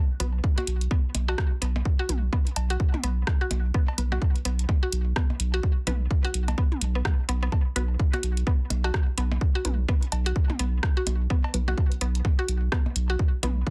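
A swung groove drives this quirky, clinical minimal techno, with a punchy, tape-warm electronic kick up front beside a saturated, sine-deep sub bass that pumps with sidechain, hi-hat and rim clicks from a house kit with soft clipping on the snare, echoing electronic blips, cowbell and toms, a woody, bright mallet-like synth pluck riff dressed in chorus, phaser, cassette tape and dub echo, and muted, resonant, wave-folded dub chord stabs sitting in the background through phaser and delay, all in a dry, dense, heavily limited mix.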